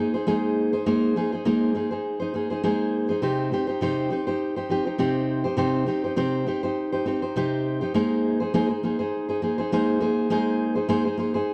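Heartfelt and sunny, this short pop excerpt is carried entirely by a fingerpicked steel-string acoustic guitar playing alone from start to finish across its 11.5 seconds. The tempo sits at 102 BPM in 4/4 with a light sixteenth-note swing, and the music rests in Ab major, moving from Abadd9 to Cm and returning to Abadd9 as the second section begins at 8.0 seconds. The guitar has a dark, full-bodied dreadnought tone and sits up front in the mix, ranging from C3 to C5. Small finger squeaks on the strings add a close, human texture to the playing. A moderate plate reverb with a long 3.4-second tail surrounds the instrument, lending the intimate performance a spacious glow.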